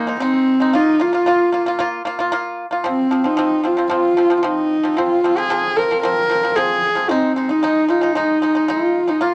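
A home cassette recording in a small room with moderate reverb frames this short cut from a longer Mongolian folk piece at 113 BPM in F yu mode, and its mood is windswept and vast. Up front, a husky, intimate horsehead fiddle carries the melody with an airy bow, light vibrato, soft attacks and portamento. Beneath it, a mellow, dry pipa picks percussive arpeggios through its cassette-tape coloring, over harmony moving from Ab5 to Bb5, F5 and back to Ab5.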